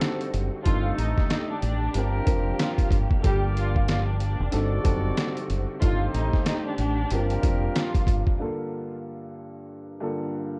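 Dark and gritty, this boom-bap hip-hop cut, taken from a longer piece, moves at 93 BPM in G minor with a swung sixteenth-note feel. A compressed, pitched-down sampler-style kit sits up front, its thumpy kick, medium-tuned snare and hi-hat carrying a large-room character, while a deep, round fingered electric bass enters at 0.3 seconds low in the register. A mellow, boxy grand piano runs through the whole passage on cassette tape, and a lush, bowed symphonic violin section carries the melody with vibrato and a focused, smooth top, touched by analog delay. Behind them, a studio string section holds expressive sustained chords with portamento in the background, and a distant, roomy horn section adds loose pop-style stabs through analog delay. The harmony circles through D7b9, F13/G, Bb6 and Gm9, and after the drums, bass and strings drop out around 8.4 seconds, the piano carries on alone until 10.6 seconds. 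The whole recording is dry and wrapped in worn, warbling old tape with a drifting pitch.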